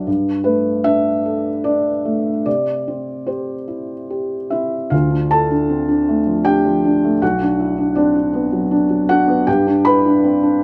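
Reflective and wistful, this excerpt of neoclassical minimalist piano drifts in 3/4 at a rubato pace of roughly 72-81 BPM. A felt-muted upright piano plays alone throughout, soft and intimate up front, ranging from B1 to B5 as it moves from Gsus2 to C, then shifts at 4.9 seconds into a second passage through Dm, Bm and G. A moderate studio reverb gives the live-in-the-room recording a gentle sense of space.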